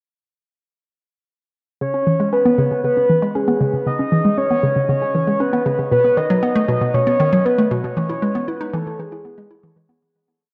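A wet spring reverb with a 2.5-second tail and heavy echo wraps this short, complete piece of ambient, sequencer-driven space music in an expansive, hypnotic haze. At 117 BPM in straight 4/4, in C# minor and tuned to A4 = 437 Hz, both parts enter together at 1.8 seconds. A hollow, bouncy square-wave pluck with a detuned, wave-folded edge and a noise layer runs an eight-step repeating sequence between B2 and E4, its quick attack and short decay colored by chorus, delay and a cassette-tape patina. Above it, a soft, round octave-layered synth lead with a sub-octave beneath and gentle vibrato sings arching motif phrases between G#4 and D#5, sustained through chorus and delay. The harmony moves from C#7(no3) to B and then E, and the whole piece begins fading at 7.3 seconds, drifting away as the lead stops at 9.8 seconds.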